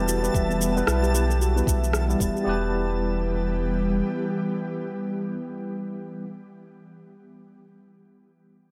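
A round, up-front sub bass anchors this meditative, earthy organic downtempo excerpt in E minor at 113 BPM with a 16th-note swing, pumping beneath an ethereal, detuned pad and a clean, tremolo-laden tine electric piano with filter sweep and digital delay, while a ringing steel handpan with gritty 12-bit sampler colour and its own filter sweep plays arpeggios until 2.7 s, a twinkling granular shimmer glints high above, and a soft electronic kick with shaker and rim click in a small room falls away by 2.5 s, as the bass sustains until 4.0 s and the pad and electric piano carry on inside a moderate stage reverb.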